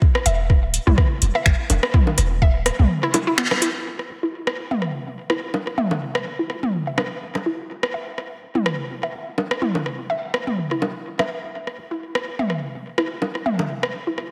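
A soft, tape-tinged electronic kick opens this quirky, cool minimal techno cut at 125 BPM with a 16th-note swing, soon joined by overdriven bongos, rim clicks and toms with tape echo, a hollow, bouncy, detuned square-wave pluck riff with chorus, sidechain pumping and tape echo, a deep, punchy sine sub bass with a pitch-drop attack, and a booming analog drum machine's finger snaps and metallic hi-hats, re-recorded in a small room, that drop away at 3.7 s after the kick stops at 2.5 s, leaving a dreamy, reverb-soaked hall mix where a filter sweep on the synth arpeggio sound begins at 3.9 s.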